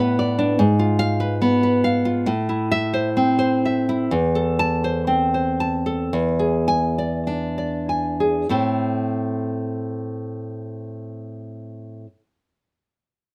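In a rubato 4/4 that slows through its first 8.5 seconds, this melancholic, intimate romantic fragment for solo classical guitar features a deep, up-front, fingerpicked nylon-string guitar with audible finger squeak, moving from Asus24 and G#m6 through Am, Am/E and E7 before returning to Am at 8.5 seconds, captured outdoors with a dry, roomless sound and playing until 12.1 seconds.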